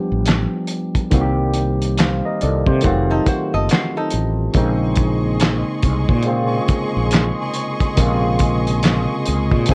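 A barky, lightly overdriven tine electric piano with lush chorus and plate reverb comps through this sultry, soulful neo-soul excerpt at 70 BPM in Bb minor, alongside a round, dark fretless bass and a muffled, cloth-damped drum kit of kick, fat snare, hi-hat and handclaps, while a dark, clean archtop guitar adds a second line from 2.8 s and a rich, bowed string section holds sustained chords from 4.5 s, all wrapped in the warble and pitch drift of worn cassette tape.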